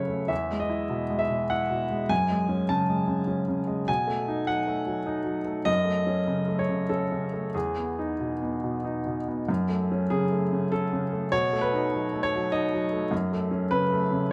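A rubato 3/4 feel carries this melancholic, intimate neoclassical minimalist piece, cut from a longer work, where a solo upright piano plays alone from 0.0 to 14.3 s. The woody, up-front piano is caught by close, detailed microphones that pick up audible action noise, set in moderate recital hall reverb. Its opening section, moving through Emaj7, F#madd9, B7 and F#m harmonies, returns at 9.5 s.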